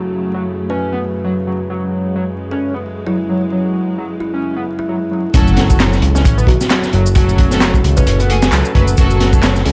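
Raw and funky, this breakbeat cut from a longer piece rides a swung 132 BPM groove in F# minor, holding on an F# minor chord throughout. It opens with a dark, woody string section sustaining chords under a filter sweep and sidechain pumping, while a screaming, guitar-like synth lead grinds out a distorted riff thick with tube saturation, lush chorus and vintage 12-bit sampler grit. From 0.7 seconds a ringing kalimba picks a thumb-plucked melody through a small-speaker tone and delay. The drop lands at 5.3 seconds, bringing in a fat, detuned analog sawtooth bass up front and a crunchy breakbeat kit with a punchy kick, high-tuned snare, hi-hat and a rolled-off top. Overdriven, layered electronic shaker and handclaps re-recorded in a large room join alongside a very quiet impact, while a rich, bowed string section adds delayed stabs in the background. Studio reverb and vinyl crackle coat the whole recording with a dusty sheen.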